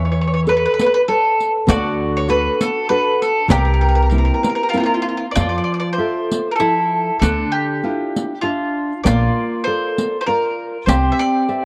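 A mellow, up-front bowl-back mandolin carries the melody through a touch of analog delay in this wistful, romantic Italian folk serenade at 98 BPM in a swung, rubato 3/4, shadowed by a second mandolin on a softer inner line, a classical fingerpicked nylon-string guitar, a woody, thumpy pizzicato upright bass that stops at 11.1 s, and a riq with bright jingles joining at 0.5 s, settling into F major from 5.4 s under moderate spring reverb and the warbling pitch drift of worn cassette tape in this short cut from a longer piece.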